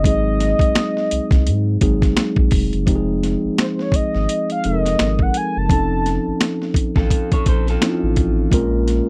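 A dry, close recording with a 1970s studio feel carries this short, relaxed and sensual stretch of neo-soul R&B, cut from a longer piece and set to a swung 16th-note groove in 4/4. Up front, a sampler-style boom bap kit sounds gritty and pitched down, with a thumpy kick, a high-tuned snare, hi-hat and finger snaps. Beneath it, a round analog bass with a deep, dark, sustained tone holds the low end, while a clean tine electric piano, heard through its built-in speakers, plays the chords from Ab7 to Fm7, then F7b13 and Bbm7. A mellow, horn-like synth lead carries the melody until 6.6 seconds, its vintage sawtooth tone warbling with vibrato, chorus and slapback echo over a soft attack. Near the close, from 7.0 to 8.5 seconds, an electric guitar through a small old amp adds a quiet second line, lo-fi and slightly broken-up.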